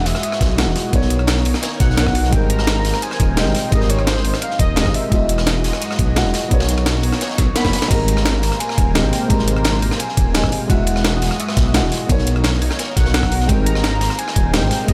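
A deep, rumbling detuned saw bass sits up front in this lush, 172 BPM liquid drum and bass passage in Ab major, while a thumpy, compressed electronic kick and two gritty breakbeat kits, one sampler-style with a high-tuned snare, the other crunchy with dark, filtered cymbals, drive a straight 4/4 groove that breaks into a drum fill near 7.4 seconds. Above them, a soft, felt-muted upright piano with audible action noise supplies the accompaniment, while a delay-tinged, velvety synth lead with vibrato and chorus carries the melody, pausing briefly before returning at 7.6 seconds. A bright unison pad with chorus, phaser and sidechain pumping glows in the background over cycling Emaj9, Bmaj9 and Abmaj9 chords, all set in a small room ambience.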